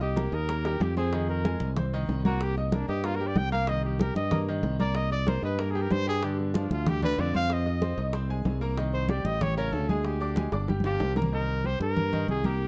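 A straight 4/4 groove at 188 BPM drives this fiery, sophisticated Afro-Cuban jazz excerpt in C minor, cut from a longer piece. Close, dry congas with a thick, damped skin anchor the pulse, while round, low-tuned bongos sit in the background until they drop out at 11.2 seconds. Up front, a growly, direct fingered electric bass carries the low end, and a brilliant, woody upright piano comps with long sustain and audible action noise. The trumpet takes the solo, smooth-topped and touched with vibrato, bathed in plate reverb as it moves over changes built around Cm7, Fm7, a G5 and a striking Amaj7. A percussion fill at 10.4 seconds leads into a brief new section at 11.3 seconds that returns to Cm7, all framed by a dark, warm production with light reverb.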